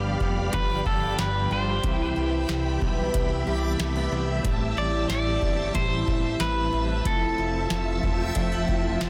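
Blissful and ethereal, this short dream pop excerpt in F lydian moves at a straight 92 BPM over G7, Cmaj7, Am7 and Fmaj7, carried by a booming analog drum machine with a deep kick, tonal snare and metallic hats that enters at 0.2 seconds, a fat, detuned sawtooth bass with filter sweeps, and a shimmering vintage string machine of violins holding sustained chords. A woody, octave-doubled twelve-string acoustic guitar picks arpeggios through lush chorus and digital delay beside a dark, clean, compressed electric guitar with tremolo, while a twangy, slightly broken-up electric guitar plays the melody through delay until 8.3 seconds. A reversed, granular swelling texture drifts in the background from 0.7 to 2.2 seconds and returns briefly at 7.2 seconds, all set in light reverb and a dense, heavily limited modern master.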